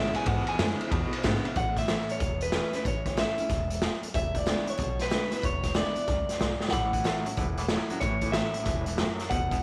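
A swung 186 BPM rockabilly groove in A major drives this upbeat, rowdy fragment of a longer piece, with a raw garage drum kit up front, gritty and boomy under dark cymbals, pushing a slightly broken-up, tape-echoed lead guitar from a small old amp, while a full-bodied picked acoustic, a woody pizzicato upright bass and a clean, compressed twangy electric riff with tremolo sit in the background, the riff dropping out at 1.5 seconds and returning at 6.7 seconds just after a drum fill, all inside a small, lightly reverberant room.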